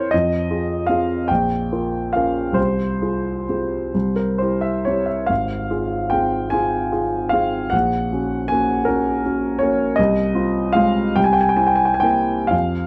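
Melancholic and wistful, this romantic classical nocturne for solo piano unfolds in F minor at a slow, rubato pace of 40-56 BPM counted in dotted quarters, in 6/8 metre. The grand piano plays alone throughout the 12.9-second passage, a fragment cut from a longer piece, covering a span from Ab1 up to Ab5. Its tone is warm and present, placed up front with a long sustain that lets each chord ring. The harmony moves from F minor through B-flat minor and C, settles on Fm/Ab, then colours the line with a Gb/Bb chord at 7.7 seconds before closing on C7 at 11.2 seconds. Light reverb and a dark, warm production give the sound a shadowed quality.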